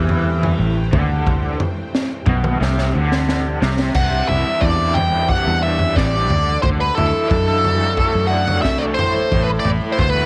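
Trippy and kaleidoscopic, this psychedelic rock excerpt moves at a steady, straight pulse in 4/4, built over chords that shift from Am7 to Cadd9, Dadd9 and Amadd9. A raw garage guitar plays a lo-fi, double-tracked riff soaked in overdrive and tremolo, while a round, punchy fingered electric bass holds down the low end with a foam-muted tone. Behind them, a buzzing, shimmering tanpura drone sits in the background, and a very quiet vintage string machine voiced as violas sustains sawtooth chords with a soft attack, long release and ensemble chorus. A crunchy breakbeat drum kit, recorded in a small room with dark cymbals, a high-tuned snare and a tight kick, sounds saturated and gritty with a rolled-off top, and plays a fill from 2.6 to 4.0 seconds. At 4.0 seconds a bluesy, up-front lead guitar enters with a distorted melody coloured by wah and tape echo, riding over the studio ambience until the cut.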